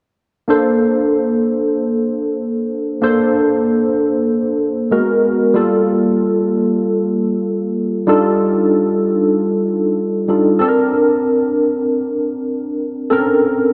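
A bright, barky tine electric piano, clean through a combo amp and sitting up front with analog chorus, plays alone from 0.5 to 13.7 seconds in this glossy, breezy pop fragment at 95 BPM in Bb major, moving through lush ninth and thirteenth chords from Bbmaj9 to F13 and back inside a moderate hall reverb.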